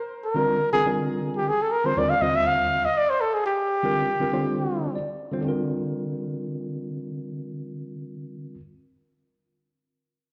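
A mellow trumpet sits up front in this short jazz excerpt, played close-miked with a light vibrato and a touch of slapback echo as it carries a solo melody in free time through its first 4.9 seconds. Beneath it, a worn tine electric piano supplies the accompaniment, slightly out of tune and lightly overdriven, its tone coming through built-in speakers with its own slapback echo. The harmony moves from Bbadd9 to Ebmaj9 and on to Gm7/D, giving the slick, intense mood a lush, extended colour. Near the end of the trumpet's solo, the electric piano adds a fill between 4.7 and 5.5 seconds, then continues on its own into the closing stretch until 8.6 seconds. The whole performance is heard as a live gig through the venue's PA, wrapped in club ambience and a moderate plate reverb that lends the room a lingering tail.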